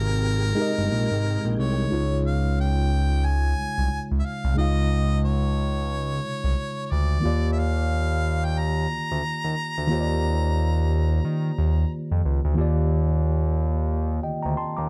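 R&B with a sensual, soulful swing, this short cut from a longer piece sets a clear, lightly vibratoed harmonica melody over a worn, slightly out-of-tune tine electric piano and an up-front, smooth sawtooth-and-square synth bass with a moving notch, while a background tonewheel organ with fast rotary speaker and chorus vibrato sustains chords only until 1.9 seconds, the harmonica stops at 11.9 seconds, and a dark, dry production frames it all.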